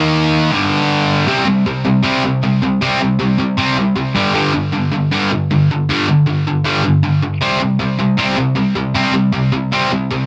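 A dense, heavily limited modern master with a moderate studio ambience frames this rebellious, rowdy punk cut at 156 BPM in straight 4/4, where a lone bright, distorted, double-tracked electric guitar sits up front with delay, picking Eb5 and G5 chords before settling into a second section at 1.3 s that moves between C5 and G5.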